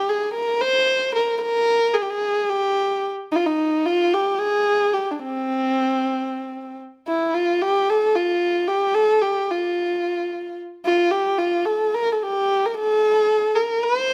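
Unfolding in free time, this soulful, melancholic Turkish excerpt features a single kamancheh played solo from 0.0 to 14.1 seconds, its intimate, airy bowed tone carrying vibrato and a soft attack up front in a close, detailed recording touched by light reverb.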